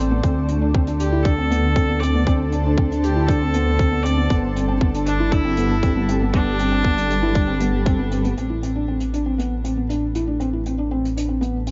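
A tight, tape-warm electronic kick sits up front in a straight four-four pulse, joined by a warm brushed hi-hat with a rolled-off top, and the kick drops out at 8.0 seconds while the hat carries on. This piano-and-strings electronica piece feels hypnotic and moving, heard as a fragment cut from a longer work. A felt-muted upright piano repeats a dark, mellow riff, its thick felt and audible action noise giving it an intimate character. Beneath it, a deep, rumbling detuned saw bass beats and pumps against the sidechain, while a cloudy granular pad holds blurred, evolving chords in its own reverb. From 1.0 seconds a single bowed viola sings the melody, bright and biting with light vibrato, though it sounds distant and earthy. The mix carries a light small-room ambience and a dark, soft-edged top end, shifting into a new section as the harmony moves to an A minor add9 chord.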